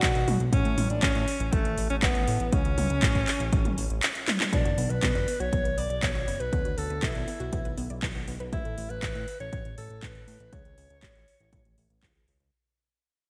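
Italo disco at 120 BPM with a danceable, melodramatic mood: an up-front alto saxophone with a clear tone, vibrato and scooped notes carries the pop-style melody through digital delay, over a fat, detuned analog sawtooth bass with a filter sweep. A punchy, overdriven electronic kick plays alongside a house kit of handclaps, metallic hi-hats and toms that sits up front with overdrive and gated reverb, and a drum fill at 4.3 s leads into a section where a lush, detuned unison pluck plays delayed arpeggios in the background until 8.5 s. The bright 1980s-style digital production carries light reverb over B5, A and Bm chords, and the sound fades out from 4.5 s in this cut from a longer piece.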